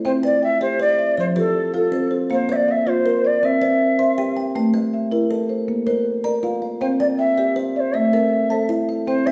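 A rippling, hypnotic southern African traditional piece built on an mbira-style interlocking cycle in 12/8, cut from a longer work. A bright, ringing kalimba with a hollow-box resonance and a round, soft-mallet marimba on rosewood bars spin arpeggios together from the start, moving through chords of C, F, Bb and Am. At 0.1 s a pure, mellow cedar flute enters with a soft-attack melody touched by vibrato, all three parts bathed in the wet reverb of a recital hall.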